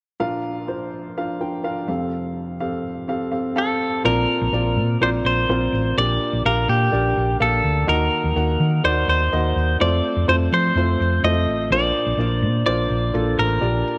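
A warm grand piano opens this piano-driven pop piece in Bb major, setting a hopeful mood at 125 BPM in a straight 4/4, its intimate, natural tone carrying audible action noise from the keys. During a short piano fill, a clean electric guitar takes the melody at 3.6 seconds, sounding bright, twangy and compressed with a picked attack. At 4.0 seconds a hollow-body short-scale electric bass joins, fingered, round and punchy with a dark, amped character. From there the music moves through Bbadd9, Gm/Bb, a striking Ebm, F and back to Bbadd9, with the piano, guitar and bass all sitting up front in a light reverb. The recording is cut from a longer piece.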